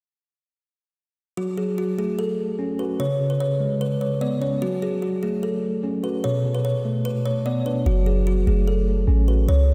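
Menacing and brooding, this half-time hip hop excerpt at 148 BPM in F# minor sets a woody, thumbnail-plucked kalimba melody with diffuse ambient delay over mellow tine electric piano chords from 1.4 s, all soaked in a dreamy, lush hall reverb, and a deep, boomy sine 808-style bass arrives up front at 7.9 s.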